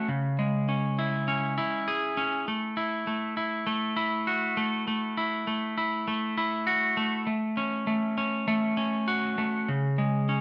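This rock fragment, cut from a longer piece, feels hopeful and cinematic at a steady 100 BPM in 4/4 in A major, tuned slightly flat to A4 = 437 Hz. A clean electric guitar takes the solo role from C#3 to G#4 throughout its 10.4 seconds, sounding bright, twangy and scooped, with picked notes placed up front. It moves from C#m to A5, then F#m/A at 7.3 seconds and C#5 at 9.7 seconds, with the playing set in a wet stone room reverb that gives it a live-in-the-room feel.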